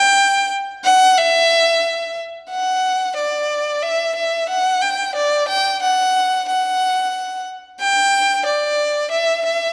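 A straight, steady 4/4 pulse underlies this brief rock fragment, lifted from a longer piece and running just under ten seconds. A single bowed violin carries the melody from start to finish, placed up front with a rich, focused tone and a singing vibrato. Its line stays in a narrow upper register between D5 and G5, giving the brooding, melancholic mood a restrained, aching quality. A slapback echo trails the violin, and a moderate plate reverb surrounds it with a lingering sense of space. The opening phrase gives way to a new section at 2.5 seconds, and the violin continues alone through to the cut at 9.7 seconds.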